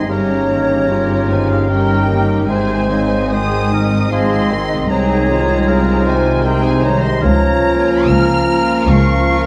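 A lush, distant violin section carries the melody high above this serene, tender slow romantic movement for symphony orchestra, a 9.5-second cut in Ab major at 76 BPM in 3/4 with a rubato, uneven pulse. Around it, a pure, crisp-edged flute, a clear oboe, a bright clarinet and a focused second violin section weave second lines, while background violas and a warm bassoon fill in the accompaniment and a mellow French horn section holds sustained chords. Beneath them, bowed cellos and double basses anchor the bass through chords moving from Eb7/G to Ab and on to Bbm/Db, all set in a dark production with moderate scoring stage reverb.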